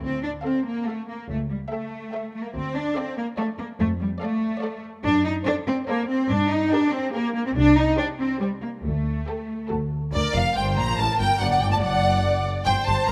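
Up-front double basses and cellos open this stormy, urgent fragment of a quick classical-period movement for string orchestra in triple time, rich and lush beneath, before the violins enter at 0.4 s with a close, expressive melody, the second violins add a focused line with a smooth top, and the violas fill in an even accompaniment, every section bowed with vibrato in a moderate concert-hall reverb.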